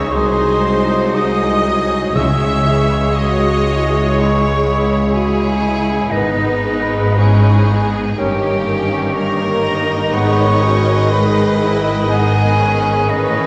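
This slow, rubato classical excerpt for symphony orchestra moves at 61 BPM with an elegiac, yearning mood, as a violin section carries the melody with vibrato and portamento while a second, focused chamber violin section, an airy silver concert flute, a faint clarinet and a cor anglais weave supporting lines. A lush viola section and a mellow bassoon fill the accompaniment, French horns and very quiet trombones hold sustained chords, and cellos and smooth double basses anchor the bass through a progression that moves from G#7/B# through C#m and G#m to D#7/G before settling back on G#m. Very quiet timpani on calf heads sound only from 2.2 to 7.7 seconds, and the whole orchestra is heard from further back in a wet scoring-stage reverb.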